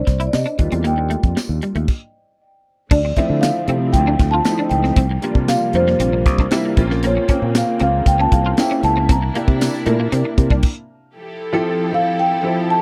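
A mellow marimba played with soft mallets carries the melody from the opening beat, over the chorus-tinged chords of an intimate concert grand piano and a picked electric guitar riff at the edge of break-up. This is breezy, upbeat 1980s jazz-funk pop in F major at 116 BPM, with a straight 4/4 feel. A tight funk kit sits up front with bright cymbals, a high-tuned snare and a tight kick, joined by a growly, fingered electric bass and a jingly tambourine in the background. After a brief stop, a lush, bowed symphonic string section enters at 2.9 seconds with smooth, vibrato-rich sustained chords beneath the groove. The harmony moves from C7 and Ebmaj7 through Dm7, C7sus4, Bbmadd9 and C9. Guitar and bass stop at 10.6 seconds, and the drums follow shortly after, leaving marimba, piano and strings to land on a closing Fmaj9. The close, dry studio sound keeps every part crisp and present, and the recording is cut from a longer piece.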